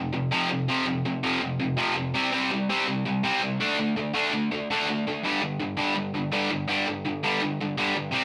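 Rebellious and upbeat, this short punk excerpt runs at 165 BPM in a straight 4/4, with a lone distorted electric guitar carrying the whole piece. The guitar is bright, picked and double-tracked, sitting up front with an overdriven edge as it moves between F2 and D4. For the first 5.2 seconds the feel drops to half time while the guitar works through F5, C5 and D5 power chords, then a new section arrives with a G5 chord and runs to 8.2 seconds. The sound is a rough rehearsal-room recording with moderate studio reverb that gives the room a short, live tail. Cut from a longer piece, it captures a raw, energetic moment of solo guitar.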